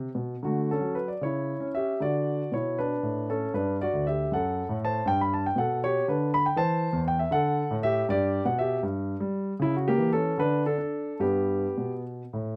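Flowing and radiant, this brief excerpt of a baroque-style suite movement for solo grand piano moves in a rubato 6/8 at around 71-81 BPM, settling into G major from 6.6 seconds, its dark, mellow concert grand spanning D2 to B5 with deep bass and audible action noise, captured up front by close, detailed microphones in a dry, intimate sound.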